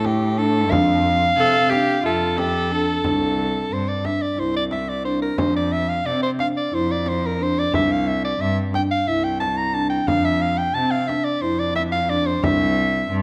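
Shimmering and restless, this contemporary chamber piece in 7/8 puts a punchy, vibrato-laden soprano saxophone melody up front over mellow, woody marimba arpeggios played with soft mallets, a rich, bowed cello bass line and a deep, dry frame drum in the background, while a clear, airy viola adds a brief second line from 1.4 to 3.0 seconds, the ensemble set in a moderate recital-hall reverb.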